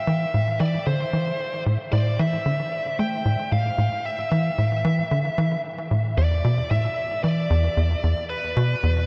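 A tight, punchy sequencer bass with a nasal sawtooth bite and subtle chorus and delay drives a riff beneath a bluesy overdriven lead guitar, electric and distorted with delay, carrying the melody through this expansive, hypnotic ambient excerpt in A minor at 113 BPM, all set in a huge reverb that evokes a vast, echoing space.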